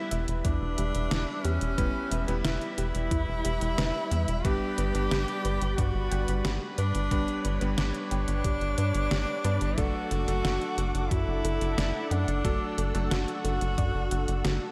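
Synthwave at 90 BPM with a moody, nostalgic air, this excerpt moves from Em to G to D/F# as a breathy, up-front tenor saxophone sings a jazz-style solo with vibrato and scooped notes, its line carried on delay and slapback echo. Behind it a smooth, detuned analog pad holds chorused, sidechain-pumped chords, a clangy vintage electric grand piano adds bright stabs, and a soft, dark pluck traces gentle arpeggios from 0.1 seconds. A punchy, driving sequencer bass with tube saturation sits up front beside a thumpy overdriven kick entering at 0.4 seconds and a detuned 8-bit drum machine with a fat snare and hi-hat, all set in a lush hall reverb that gives an arena-sized sound.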